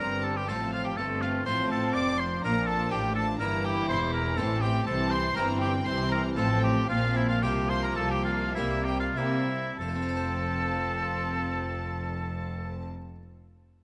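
A lively, festive baroque-style concerto movement in classical style, cut from a longer piece, sets a clear, up-front solo oboe over a bowed chamber string band of gut-string violin sections, a dark, nasal viola section, a warm cello section and a rich double bass section, with a full, plucked harpsichord in the background. The oboe and the high violins share the melody while the lower violins carry a second line, the violas and harpsichord fill in the accompaniment, and the cellos and double basses anchor the bass, the strings in a period style and the oboe, violins, violas and double basses with light vibrato. The pace slows from 4.4 to 9.8 seconds before a new section begins, heard through close, detailed microphones in a moderate stage reverb.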